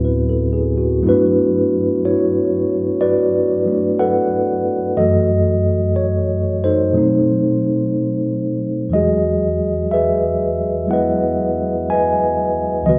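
Swung eighths at a slow 61 BPM in 4/4 carry this tender, romantic jazz ballad fragment, where a solo tine electric piano, clean and up front through its built-in speakers, spans C#2 to G#5 over rich chords moving from D13 and Gmaj13 through F#m7 and B7b9 to settle on Emaj9 at 8.9 seconds, all bathed in a recital hall's moderate 1.4-second reverb and tuned slightly sharp to A4 = 441 Hz.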